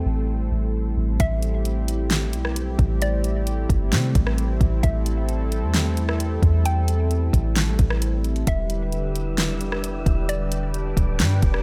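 A hazy digital ambience surrounds this spacious atmospheric cloud-rap excerpt in A minor, moving at 132 BPM with a half-time feel as a mellow pad with a slow attack and sidechain pumping holds sustained chords, a deep, round 808-style bass sits up front, and a woody, mallet-like FM pluck carries the melody through chorus, phaser and tape echo. An airy, breathy wind texture drifts in the background at the opening, until the smooth R&B drum kit enters at 1.2 seconds with a soft kick, fat snare, rim click and hats recorded in a large room. The harmony moves from Am7 to Em7 at 8.5 seconds, and the wind texture returns at 8.9 seconds.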